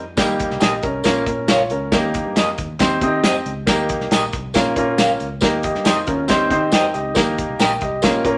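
A straight, upbeat 4/4 groove drives this warm, joyful 1960s-style soul clip, where an up-front acoustic drum kit with a tight kick and medium-tuned snare and a close, jingly tambourine in the background play alongside a short-sustained baby grand piano and a foam-muted fingered bass, while a slightly broken-up guitar through a small old amp adds dark, phaser-coloured stabs from 0.6 s and a clean, compressed second guitar slips in a brief background riff at 6.1 s, framed by moderate studio reverb and lossy compression artefacts.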